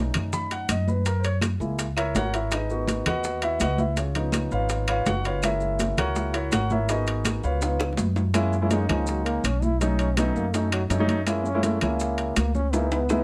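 Afro-Cuban jazz at a lively 165 BPM in F# mixolydian, this sophisticated excerpt opens with a dark, mellow grand piano out front taking a solo over a woody pizzicato upright bass. Ringing metal-shell timbales, thick-skinned congas, tight high-tuned bongos, grainy maracas and compressed claves fill out the percussion, with a drum fill closing each half. At 8.7 seconds a clear, punchy trombone enters with a forceful, vibrato-laden jazz solo, all in a lightly reverberant room.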